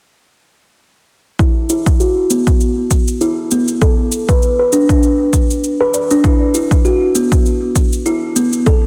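Hypnotic and meditative, this organic downtempo excerpt at 99 BPM in 4/4 with a swung sixteenth feel sets an up-front, woody kalimba playing arpeggios from B3 to D5 through a low-pass filter sweep and digital delay against a punchy, layered electronic kick drum and a quieter produced shaker, all three entering at 1.4 seconds in a lush 2.0-second hall reverb under a dense, heavily limited modern master.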